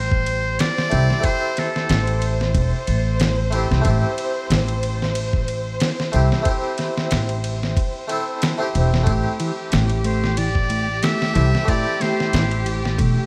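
Smoky and cinematic, this 92 BPM trip hop excerpt in A minor, tuned to A4 = 436 Hz, sits on a lightly swung Am7 groove where a woody pizzicato upright bass and a gritty, compressed sampler-style drum kit with thumpy kick and fat snare sit up front, a bright Flemish harpsichord shimmers with tremolo and tape echo beneath lush bowed symphonic strings, a buzzy, breathy muted trumpet whispers scooped jazz phrases through dub echo from 0.0 and again at 10.1 seconds, and a dark, clean fingered electric guitar adds delayed arpeggios from 9.1 seconds, all wrapped in vinyl crackle and small-room ambience.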